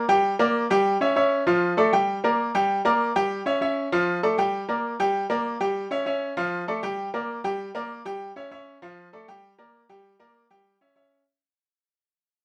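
A small room with a moderate, short ambience surrounds this brief Latin piano recording, which is cut from a longer piece and fades out from 1.5 seconds to the end. A bright upright piano plays alone throughout, sitting up front with a woody, polished tone. It covers a range from F3 to G5 at a brisk 196 BPM in straight 4/4 time, giving the music a passionate, danceable character. The harmony circles through a short minor-key cycle of Gm, C#dim/G and Dm, repeating several times. The piano stops at 11.2 seconds as the fade completes.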